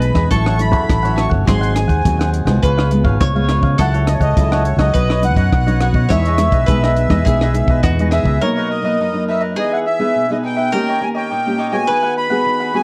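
Heard through worn, warbling old cassette tape with a drifting pitch and light reverb, this joyful, festive samba and choro fragment is cut from a longer piece in a straight 4/4. A reedy, sweet accordion with light tremolo tuning carries the melody up front, its tone smooth yet dark, while a bowl-back mandolin with brilliant double strings plays a second line beneath it. A crisp, picked cavaquinho and a fingerpicked classical nylon-string guitar, finger squeak and all, fill in the accompaniment under chords such as A6, F#m7/C# and Emaj7. A growly, amped fingered electric bass run through an envelope filter sits punchy and prominent alongside a dry compact cocktail drum kit of hi-hat, kick drum and rim click. Bass and drums stop at 8.4 s as the second section begins, leaving the plucked strings and accordion to move through Bmaj7, D#7 and G#m7/D#.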